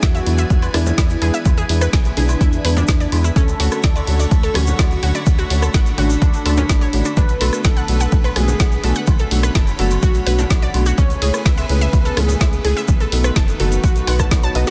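A hopeful, uplifting progressive house passage at 126 BPM in a straight 4/4, cut from a longer piece and moving through E7, Dmaj7, Bm7, Amaj7/C# and B7. A punchy electronic kick sits up front beside a round, deep analog bass, while a deep house kit adds a woody snare, dark hats and rim clicks, with very quiet congas and woodblock and a grainy egg shaker in the background. A thick, bold unison lead carries the melody with vibrato and dub echo, and a detuned analog pluck spins chorused arpeggios over a lush, slow-swelling unison pad. A felt-muted upright piano enters at 0.3 seconds with soft, intimate stabs, and a glassy texture of drifting overtones joins very quietly at 0.7 seconds on a held B5. Sidechain pumping breathes through the lead, pad, pluck, bass and piano, all set in light digital ambience under a dense, heavily limited modern master.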